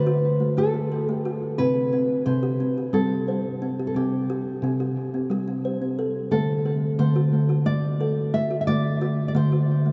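A meditative world piece in a hypnotic 7/8, cut from a longer work, where an up-front, woody kalimba plucks gentle arpeggios with a hollow, boxy fingertip tone beneath a softer fingerpicked nylon-string guitar melody with audible finger squeak, both trailed by tape echo and bathed in a vast cathedral reverb.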